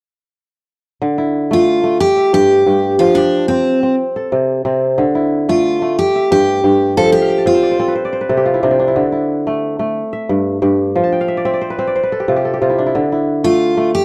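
Rolling in a straight 12/8 at 121 BPM in D dorian, this hypnotic, flowing West African traditional excerpt sets ringing, crisp fingerpicked kora arpeggios up front throughout, adding kora fills along the way, while a bright, full-bodied jumbo steel-string acoustic guitar picks a melody with audible finger squeak from 1.5 seconds until 7.9 seconds and returns at 13.4 seconds, all captured in a dry, close small-room sound with a 1970s studio character.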